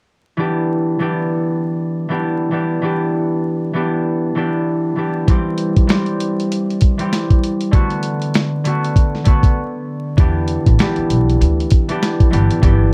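A ringing, fingerpicked concert harp sits up front from the start of this reflective, gritty boom-bap hip-hop excerpt in E minor, moving through Em7, C and Bm7 at 98 BPM with a 16th-note swing, filtered at both ends of its range. A compressed, sampler-style drum kit with a thumpy kick, medium-tuned snare and hi-hat enters up front at 5.3 seconds, and after a short break a woody pizzicato upright bass arrives at 10.2 seconds as the harmony returns to Em7 and closes on G6. The dark production carries light reverb and a layer of vinyl crackle.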